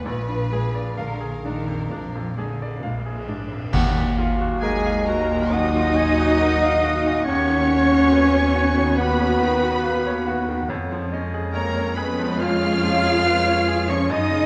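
A rubato 4/4 pulse drifting between 64 and 72 BPM carries this bittersweet, sorrowful film-score excerpt in Eb minor, where a lush violin section sings the melody high above a softer second violin line, viola, cello and double bass sections, and a bright baby grand piano with audible action noise. Cymbal swell, clash cymbals and bass drum sound from 0.1 s, and at 3.7 s an ensemble accent brings in quiet timpani and a mellow solo clarinet, followed at 4.6 s by a very quiet, pure flute group, a distant oboe and sustained chords from a mellow French horn section. The whole is bathed in a wet scoring-stage reverb and a worn, warbling cassette-tape pitch drift.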